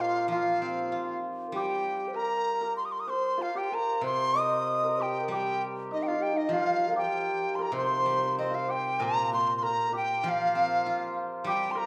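Chinese traditional chamber music, graceful and tender, in a free rubato feel around 97 BPM: a bright large dizi carries the melody up front with a buzzing, vibrato-laden, slightly unsteady tone, while a shimmering hammered dulcimer and a mellow, hollow low xiao play second lines beneath it. A silvery steel-string zither played with fingerpicks provides ringing accompaniment, and the xiao drops out at 8.7 seconds just before a new section begins at 9.0 seconds. The ensemble sits in a reverberant recital hall, and the recording is cut from a longer piece.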